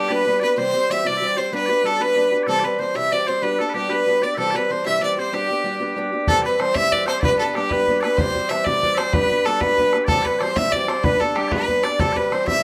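Bright and rollicking, this Celtic jig excerpt in 6/8 sets a clear, intense fiddle with light vibrato up front in a plate reverb over mellow, sweet small bagpipes carrying a continuous second line and a fingerpicked archtop guitar whose fresh strings give a finger squeak, while a damped, tight bodhran joins at 6.3 seconds as the G and C chords alternate throughout.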